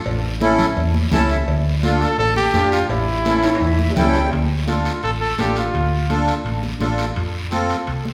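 A clear trumpet carries the melody from 1.8 to 6.2 seconds in this passionate, danceable cumbia at 169 BPM, its light vibrato and scooped notes delivered in a pop style over a sweet, reedy accordion with light tremolo tuning that adds short fills. Up front beside them, a dark, round, punchy hollow-body electric bass moves through A, Dm, A7 and F as the music settles into D minor at 4.3 seconds, while ringing metal-shell cowbell and timbales and damped, high-tuned congas struck with hard hands sit in the background alongside a raspy, saturated guiro. A drum fill leads into the second section, and the recording sits in a recital-hall reverb.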